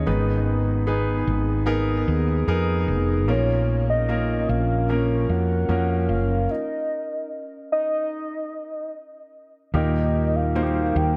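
A woody, growly fretless electric bass sits up front in this melancholic pop ballad excerpt, anchoring a slow, straight 4/4 pulse at 74 BPM with a punchy, hollow-body tone. Above it, a soft octave-layered synth lead carries the emotional melody in a round, dark voice with a sub octave, vibrato, chorus and tape echo. A clear, intimate grand piano accompanies close by, its natural sound revealing audible action noise and carrying its own tape echo, while a glassy, ethereal glass harmonica holds slow-attack chords in the background. The harmony moves from Abm to Bbm before a stop from 6.5 to 9.7 seconds, then arrives on Eb as the section repeats. An echo chamber reverb gives the echo-heavy mix a moderate sense of space.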